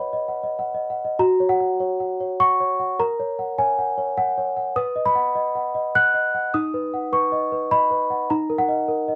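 A solo celesta, bell-like and delicate with a sweet, smooth tone from medium felt hammers, sits up front in this innocent, dreamy classical lullaby in a gentle, straight three-beat metre, ranging from its low-middle register to high sparkling notes under light reverb and a dark, warm production, with a short opening phrase giving way at 1.2 seconds to a longer passage before the fragment is cut from the larger piece.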